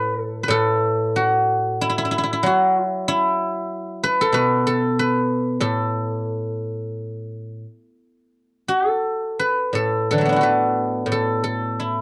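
A solo guzheng, plucked with fingerpicks, opens this serene, elegant fragment of Chinese traditional music, its silvery, ringing tone sitting close and up front in a dry 1970s-style studio sound touched with light reverb as it moves freely in rubato around 84-95 BPM in the A zhi mode, tuned to A4 = 444 Hz, shifting into a new section at 8.3 seconds before the fragment ends at 12.0 seconds.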